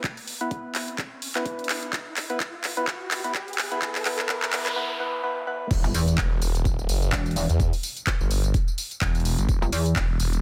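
Set in a light reverb with a high-pass filter trimming the lows of the overall mix, this bouncy, swaggering bass house cut opens mid-build with a swung groove. A hollow, organ-like percussive stab carries the first section, its mellow, decaying hits colored by chorus, tape echo and sidechain pumping, over an E5 chord. Beneath it, a knocking electronic kick drum and an up-front house kit of handclaps, tape-warm hats, tambourine and crash cymbal play a drum fill while a riser and noise sweep build toward the drop. At 5.7 seconds an impact lands on an E minor chord and the stab gives way to two bass parts. A swirling, thick detuned saw bass with phaser and overdrive is joined at 5.8 seconds by a heavy, pulsing pluck wobble bass with chorus and tube saturation, both pumping with sidechain compression. The kick drops out at 10.1 seconds, while the kit carries on to the end, where the fragment breaks off at 10.4 seconds.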